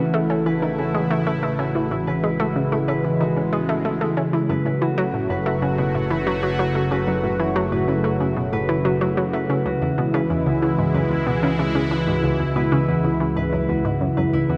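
Expansive and luminous, this ambient, sequencer-driven space music moves at 93 BPM in a straight 4/4, drifting from A to F#m at 4.5 seconds and C#m at 9.7 seconds. An up-front, detuned pad sustains bright chords with chorus, while a round, nasal analog pluck plays a riff through chorus and tape echo, and a ringing, fingerpicked concert harp adds arpeggios through its own tape echo. Beneath them a fat, saturated analog bass fades in across the whole passage, all set in a lush hall reverb.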